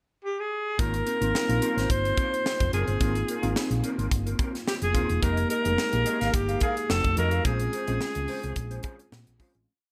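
Breezy and upbeat, this short, polished piece of 1980s jazz-funk pop moves at 108 BPM in 4/4 with a light sixteenth-note swing, in A-flat major. A breathy, whispered alto saxophone opens alone on a pickup at 0.2 seconds, then carries a motif-based pop melody with vibrato and a soft attack, sitting up front yet with a roomy, intimate quality. From 0.8 seconds the band joins: a mellow, slightly out-of-tune tine electric piano plays syncopated rootless chords through a lush chorus, while a dark, clean electric guitar adds a crisp sixteenth-note rhythm riff coloured by ensemble chorus. A round, hollow-body short-scale bass plays an agile, syncopated line with chromatic approach notes, and a crisp fusion drum kit with a high-tuned snare and punchy kick drives a sixteenth-note studio groove under gated reverb. The harmony moves from Ab69 through Fm11 and F7b9 to Bbm9 as the verse fades out from 7.5 seconds in a small room ambience.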